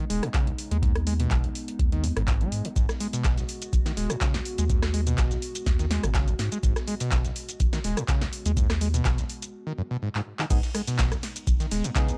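Playful and trippy, this acid house excerpt at 124 BPM in A-flat minor rides a squelchy, resonant overdriven acid bass riff with distortion and analog delay over a thick saturated sub bass, a deep electronic kick and a dry analog drum machine with punchy snare and metallic hats, while a warbling, nostalgic lo-fi pad with phaser pumps beneath, a very quiet dusty sampler-style kit joins at 2.8 s, and after a break and drum fill a hollow, ring-modulated organ stab with lush chorus arrives for the drop at 10.5 s, all in a dry, gritty hardware sound.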